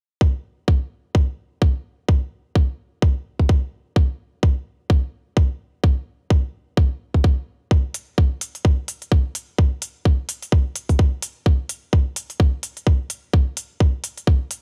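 A tight, layered electronic kick drum opens this quirky, clinical minimal techno excerpt in 4/4, sitting up front with a touch of studio reverb and the boxy character of a small room, pushed along by a 16th-note swing. At 7.9 seconds clicky, tape-tinged electronic hi-hats join, also up front but lower in level. The overall sound is dry and gritty, with a hardware edge.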